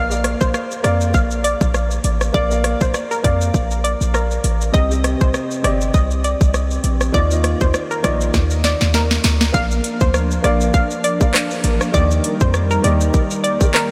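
Dancehall at 100 BPM in Bb major, this summery, bouncy fragment of a longer piece sways on a gentle 16th-note swing. A hollow square-wave pluck carries the melody with chorus and delay, its detuned, ring-modulated tone snapping in fast and decaying, while a clear, somewhat boxy baby grand piano supplies accompaniment that pumps against the sidechain. Underneath, a deep, boomy 808-style bass with a sine core and fast attack sits up front beside an electronic island pop kit of tight kick, sharp snare, metallic hi-hats, rim clicks, handclaps and shaker, tape-warmed and up front. The chords move from Bb through Cm to Ebsus2, and a drum fill from 8.3 to 9.5 seconds leads into a new section where an airy, breathy pad with slow attack and long release enters at 9.5 seconds, sustaining with chorus and sidechain pumping over Bb and Eb. The whole mix is soaked in a huge ambient reverb that gives it a dreamy, floating sheen.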